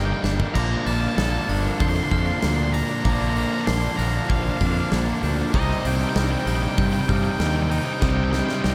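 A dark, fuzzed-out lead guitar with tape echo carries the melody high in this cathartic, melancholic post-rock piece at 96 BPM in a straight 4/4, above a round, punchy fuzz bass sitting up front. Around it, a very quiet pedal steel guitar adds clean, compressed, twangy sustained chords with slide and volume swells. A glockenspiel struck with brass mallets sparkles in the background with ringing, echoed arpeggios, while a scooped, clean electric guitar picks its own arpeggios very quietly. A huge acoustic arena kit with a punchy kick and medium-tuned snare enters at 0.2 seconds on a fill, and a bright, overdriven stack guitar joins at 0.5 seconds with a riff alongside another distorted guitar in the background. The harmony moves from Ebmaj7 to Bbmaj7 and then Cm7, the drums fill again from 8.0 seconds, and the whole dreamy mix is soaked in a huge ambient reverb.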